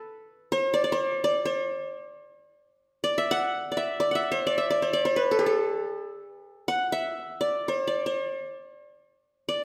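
Bathed in the lush reverb of a recital hall, this passionate 9.6-second excerpt of Arabic maqam music in free time features a solo acoustic qanun placed up front, its plectrum-plucked triple strings ringing out with a bright, keen edge.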